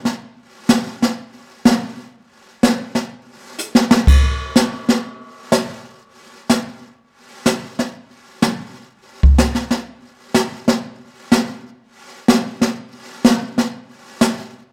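Down-home and cheerful, this brief country excerpt at 124 BPM swings its eighth notes on a lone jazz brush drum kit, up front and airy with polished sheen, where brushes work a high-tuned snare against dark cymbals, hi-hat, crash and a boomy kick in a studio room with light reverb, a drum fill arriving from 3.6 to 4.1 seconds.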